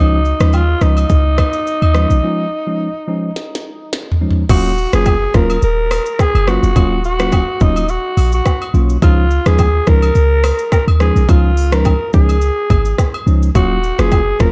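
A dark, dry production frames this hypnotic, smooth afrobeats cut from a longer piece, with a lightly swung groove drifting between Dbadd9 and Ebm7. A raspy, growling alto saxophone with vibrato and tape echo leads up front over a worn, slightly out-of-tune tine electric piano with subtle chorus, and a deep, boomy sine 808-style bass with a fast attack. A glitchy electronic drum kit with a tight kick, tiny snare and clicky hats enters at 0.3 seconds and plays a fill at 3.4 seconds within a break, while agogo bells and woodblock click along in the background.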